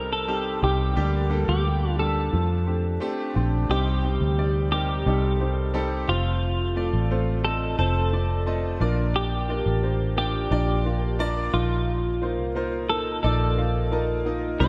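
Soaked in a lush hall reverb that gives the mix a dreamy glow, this uplifting, hopeful piano-driven pop piece at 88 BPM sets a clear, intimate grand piano with audible action noise and a twangy, compressed clean electric guitar melody, both touched by analog chorus, over a dark, round, foam-muted fingered electric bass sitting punchy and up front, as the chords move from Cm through Gm/D and F6 before a new section at 3.7 s carries them on to F, Bb and Ebsus2/Bb.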